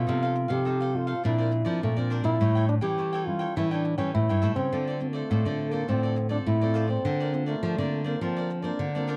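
A breathy, mellow trombone carries the melody up front in a jazz-style solo, its vibrato giving this short samba fragment a bittersweet, nostalgic cast. Beneath it, a full-bodied nylon-string guitar fingerpicks classical-style accompaniment close to the listener, while a crisp, warm, picked cavaquinho adds acoustic accompaniment above. A second nylon-string guitar with fresh strings supplies the bass, thumb-plucked and sitting in the background. The groove moves at 103 BPM in a straight 4/4 in D minor, passing through F7/C, Bbadd9 and A7 before settling on Dm7 at 4.7 seconds and Bbadd9/D near the close. Light reverb and a dark, warm production wrap the ensemble, and the passage is cut from a longer piece, ending at 9.2 seconds.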